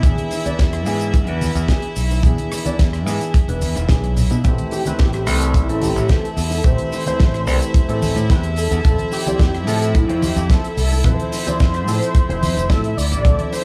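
Groovy and sensual, this nu-disco excerpt in A minor moves at 109 BPM over a dry, tight kick and a punchy, bright fingered electric bass up front, with a damped 70s kit's fat snare, hi-hat, rim click and shaker, background congas and bongos, a worn baby grand piano through tape echo and a low-pass filter, and floating sul tasto chamber strings pumping under sidechain, while a thick, detuned, wave-folded unison lead with vibrato, ensemble chorus and tape echo joins at 4.7 seconds over chords moving from E7 through Am7 and Fmaj7 to Dm7.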